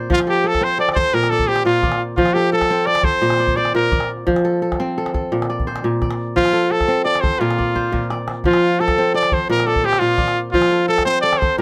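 A rolling 12/8 pulse, counted in dotted quarters with a straight feel, carries this flowing, warm slice of West African string and xylophone music, cut from a longer piece. The kora opens the recording at 0.0 s and sits up front with crisp, ringing fingerpicked arpeggios that span from its low register into the upper range. Almost at once a bright trumpet takes the solo melody in a pop style, also up front, shaping its lines with light vibrato and scooped notes. Beneath them, a deep calabash keeps the percussion going at a lower level, its tone compressed and saturated, and a drum fill arrives between 7.6 and 8.5 seconds. The harmony simply alternates between two chords about once a second, and a light reverb gives the whole passage a gentle sense of space through to its close at 11.6 seconds.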